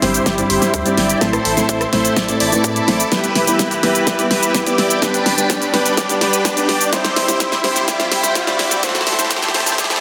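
A huge, detuned supersaw lead riff rides up front with phaser, delay and sidechain pumping over a felt-muted upright piano with audible action noise, reedy, gut-toned bowed strings in the background and a pop drum kit with a fat snare, hi-hat, rim click and shaker, joined at 0.3 s by a punchy electronic kick, while a saturated sub bass, a very quiet electronic riser and swell and a filter sweep drive this anthemic, emotional festival progressive house build-up at 126 BPM in A minor through C/G, Am, Em and G, the mix set in a lush hall reverb and a dense, heavily limited master.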